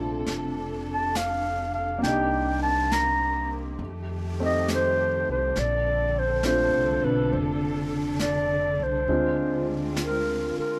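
A woody upright piano with audible action noise, dark bowed strings and a pizzicato upright bass open this tender, late-night jazz ballad fragment in Bb major at a slow, swung 68 BPM, with brushed snare and hi-hat entering at 0.3 seconds before a breathy, close-miked clarinet takes the lead at 0.9 seconds, its whispered subtone, vibrato and scooped notes sitting up front in plate reverb over a moderate studio room as the harmony moves from Bbmaj9 through Cm9 and F9, back to Bbmaj9 and on to Dm7b5.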